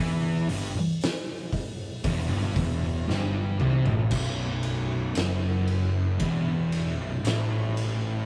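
A rough rehearsal-room recording with moderate small-room ambience frames this ominous, brooding slice of stoner and doom metal: a dark, up-front fuzz guitar and a second distorted guitar set further back grind out a heavy riff that shifts from Emadd11 to B5 at 4.1 seconds, a growly, bright, overdriven picked bass sits behind them, and an oversized, low-tuned acoustic drum kit with a fat snare, punchy kick and gritty, saturated tone enters at 0.5 seconds and plays a fill from 3.1 seconds.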